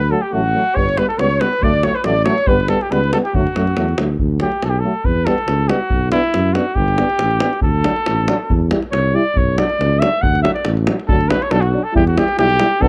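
An up-front cornet with vibrato and jazzy scooped notes carries the melody and takes a solo from 4.2 seconds in this exuberant, festive Balkan brass band excerpt in D major at 139 BPM in a swung 2/4, over a dark tuba bass, two background euphoniums playing accompaniment, a deep davul entering at 0.8 seconds, and a flugelhorn second line that stops at 4.0 seconds, captured as a dry, close, 1970s-style recording with small room ambience.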